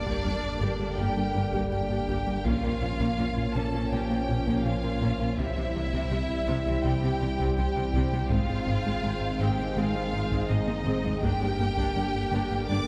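In a straight 4/4 pulse, this tense, relentless cinematic cue blends orchestra and electronics, cut from a longer piece. A soft, expressive violin section carries the lush, vibrato-rich melody on top, while a second, focused violin line moves beneath it. A rubbery, bouncy square-wave bass riff sits in the background alongside a deep, full sub bass with an octave layer. Woody violas, smooth cellos and double basses fill in the low strings very quietly. Distant, dark French horns, tight trombones and a hollow, flute-like pad hold sustained chords that shift from Gm through Bbm, C and Ab before returning to Gm at 11.2 seconds. A gentle, round pluck plays quiet arpeggios, and a taiko ensemble struck with heavy sticks drives the drums throughout, with a fill from 10.5 to 11.2 seconds, all set in a wet concert-hall reverb.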